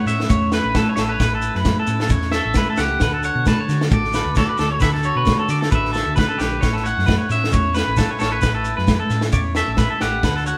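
A lightly swung sixteenth-note groove in 4/4 drives this joyful, danceable highlife excerpt, with a tight funk kit of high-tuned snare and tight kick up front, grainy shekere and bright, thin-skinned congas sitting in the background, and a dark, round hollow-body bass underneath. Three twangy, slightly broken-up picked electric guitars fill out the band: one carries the melody through tape echo, another plays accompaniment, and a compressed third picks arpeggios in the background, over chords moving from Aadd9 to D and back to Aadd9 at 6.6 seconds. The band plays live together in a single stone room with moderate reverb.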